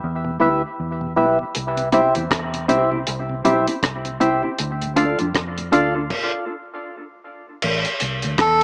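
Deep and meditative, this short dub reggae excerpt at 79 BPM in A minor opens with round, foam-muted fingered electric bass and a soft, flute-like tonewheel organ through a slow rotary speaker before a hollow, nasal organ stab with chorus, phaser and tape echo, a dry, tight-kicked reggae kit entering at 1.5 seconds with rim click, hi-hat and crash, and a clean, compressed electric guitar with tape echo join over Em, C and Dm chords, with a filter sweep from 4.6 seconds, a stop from 6.1 to 7.6 seconds, and a reedy, breathy melodica arriving on the final Am at 8.4 seconds, all bathed in spring reverb and a small-speaker sound.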